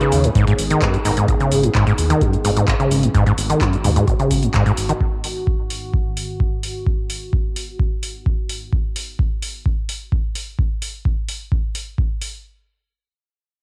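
Raw, driving acid house at 129 BPM in G# minor opens with a squelchy, gritty overdriven acid bass riff up front under a filter sweep, a brief muted dub chord stab in the background, a metallic-hatted analog drum machine with cabasa and handclaps, and a warbling, nostalgic pad whose pumping, phased chords sweep through a filter until 8.7 s, joined almost at once by a round, mellow analog bass and, from 0.4 s, a deep, overdriven electronic kick, with both basses dropping out near 4.9 s while the drums carry this lo-fi cassette home recording on through its spring reverb.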